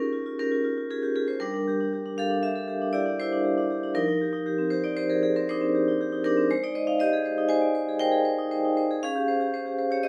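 A moderate stone-room reverb, about 0.9 seconds long, surrounds a solo vibraphone that sits up front in the mix. This is a contemporary classical piece in F dorian, reflective and flowing. It moves at 119 BPM in 5/4, with the pulse loosened by rubato. Played with medium hard mallets, the instrument sounds bright, ringing and airy, with a slow motor vibrato shimmering through the sustained tones across a range from F3 to Ab5. The harmony drifts through extended chords: Eb9sus4 at the start, then Gmadd9, F9sus4 and Abmaj7, before settling on Dbmaj7#11 at 9.0 seconds. The passage lasts about 10.1 seconds and is cut from a longer work.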